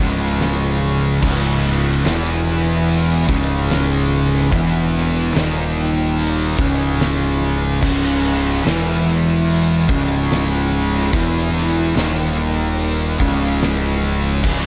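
This excerpt of heavy, brooding stoner and doom metal opens with three fuzz guitars and a growling picked electric bass all starting at once on a riff centered on C# minor, moving at a slow 73 BPM in a straight 4/4. The guitars sit in the background, one bright, double-tracked and compressed, another dark, and the third warm, all picked with distorted fuzz in a low register. Up front, the overdriven bass is round and dark, played direct and through an amp down in the deepest octave. An oversized, low-tuned acoustic drum kit joins at 0.4 seconds, with a boomy kick, fat snare, hi-hat, dark crash cymbals and a saturated, gritty character heard in a bright stone room that pumps. A light reverb surrounds the whole band as the riff holds on a single C# minor chord through the fragment's 14.7 seconds.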